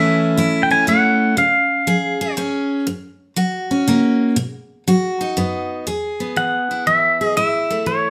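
A swung feel in 3/4 at 120 BPM sets an easygoing, down-home country mood in E major, cut from a longer piece. A bright, full-bodied picked acoustic guitar carries the accompaniment throughout, with audible finger squeak, while a clean electric pedal steel guitar plays the melody with fingerpicks, slide and volume swells, heard until 2.3 seconds and returning at 6.4 seconds. Both guitars sit up front in a moderate studio reverb.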